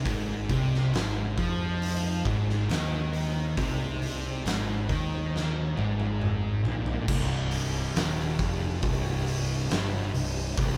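Brooding and heavy, this excerpt of stoner and doom metal crawls at 68 BPM in C minor, with an up-front, distorted fuzz guitar riff and a second, darker fuzz guitar sitting very quietly beneath it until 7.1 seconds. A round, overdriven picked bass and an oversized, low-tuned acoustic kit with a boomy kick, fat snare, dark cymbals and a gritty, pumping room sound drive the riff, with a drum fill from 5.3 seconds leading from an Ab5 chord into C minor. Underneath, a very quiet, silky string machine holds warbling, ensemble-chorused chords, and the band sounds as if playing live together in one room with light reverb.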